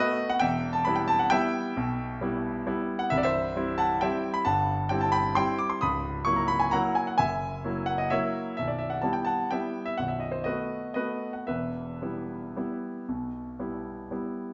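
A polished, up-front concert grand rings in a moderate recital hall, its deep bass and short sustain heard through a top end that stops at 7.9 kHz. This classical piano waltz in E minor sways in 3/4 with a rubato feel, its tempo moving between 107 and 141 BPM as the solo piano covers a range from B0 to D#6 for the full 14.5 seconds. The nostalgic, bittersweet harmony moves from Em through C and F#7/C# to Em/B and B7 before settling back on Em at 11.5 seconds, in a passage cut from a longer piece.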